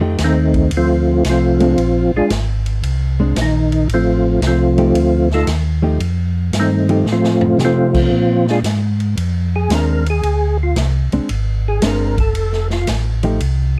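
A percussive tonewheel organ with key click, third-harmonic percussion and a slow rotary speaker carries the greasy, soulful melody in this swinging 114 BPM soul jazz organ trio excerpt in F mixolydian, backed by a round, mellow organ bass line with chorus vibrato, clean fingered accompaniment from a dark, compressed hollow-body electric guitar, and a quiet acoustic big-band drum kit with a punchy kick that plays a fill at 7.1 seconds, in a dry mix with little reverb.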